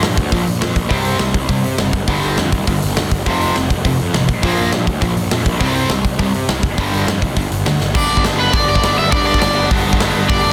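Energetic and rowdy, this punk rock excerpt drives with a straight 4/4 feel as a tight, bright distorted guitar riff charges through power chords with a growly, fuzz-laden picked bass beneath it, alongside a big, punchy acoustic drum kit with crisp cymbals, while a very quiet, sludgy overdriven guitar thickens the riff from 3.3 to 7.8 seconds, and after a drum fill at 7.8 seconds an up-front, hollow-bodied overdriven guitar takes the melody in a dense, dry, heavily limited mix.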